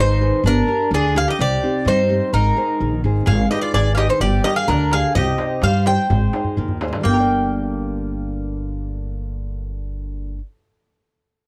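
A bright, metallic Greek bouzouki leads this tense, dramatic Greek folk fragment at 127 BPM in 2/4 and G phrygian, its picked double strings up front over a mandolin's woody second line, fingerpicked classical nylon-string guitar accompaniment and a growly pizzicato upright bass, while a crisp, deep, saturated darbuka sits in the background from 3.3 to 7.3 seconds with a fill at 6.4 seconds, all in a dry, close 1970s-style studio sound.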